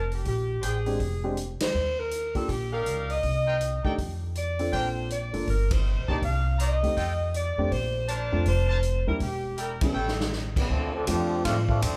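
A swung 4/4 groove drives this energetic big band swing excerpt, with a woody pizzicato upright bass sitting up front and a natural-sounding studio drum kit working across ride, hi-hat, snare, punchy kick and crash. Over it, a tight, mellow saxophone section carries the melody with light vibrato, while a present, bright trumpet section punctuates with stabs and the whole band hits accents at several points. A warm grand piano fills in the harmony beneath, moving through rich extended jazz chords. A drum fill at 10.0 s leads into a brief new section at 10.7 s, where a nasal, straight-muted trombone section takes a short solo up front. The band plays live together in a large studio room, and a moderate reverb gives the saxophones a roomy sound.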